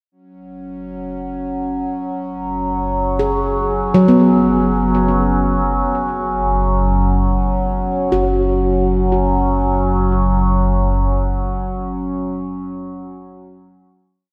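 Unfolding in free time, this reflective, spacious ambient piece fades in on a nasal, chorused drone with moving overtones, joined at 1.0 seconds by an ominous, rumbling bass drone; at 3.2 seconds a bright, ringing handpan enters with tape-echoed arpeggios in three slow loops of unequal length drifting against each other, all bathed in a long cathedral reverb before the piece settles on a final chord from 8.1 seconds.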